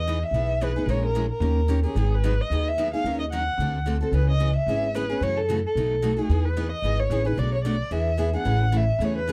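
A dark, warm and nearly dry sound frames this charming, swinging stretch of jazz manouche at 222 BPM in E major, where a bowed violin carries the melody with vibrato, portamento and a soft, expressive attack up front, a woody, thumpy pizzicato upright bass on gut strings sits equally forward, and a bright picked steel-string acoustic guitar supplies the accompaniment from 0.1 seconds, all moving through jazz changes from Emaj7 toward Amaj7 at 8.5 seconds.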